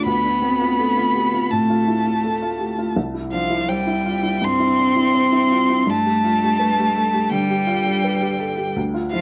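A bowed violin, a cello and a felt-muted upright piano sound together from the first moment of this short, reflective neoclassical excerpt, which is cut from a longer piece and moves with a gentle rubato in 4/4. Up front, the single violin carries the melody high in its register with a rich, smooth and even tone, vibrato and a touch of plate reverb. Beneath it, a lone cello plays a second line, clear and vibrato-laden but set further back in the space. The upright piano supplies a soft, mellow and intimate accompaniment, its action noise audible and natural, spanning from deep bass to the middle register. The harmony moves from D minor to Cadd9 at 3.0 seconds and Gadd9 at 5.9 seconds, giving the passage a fragile quality, all within a moderate large-studio ambience whose top end is rolled off above 10.3 kHz.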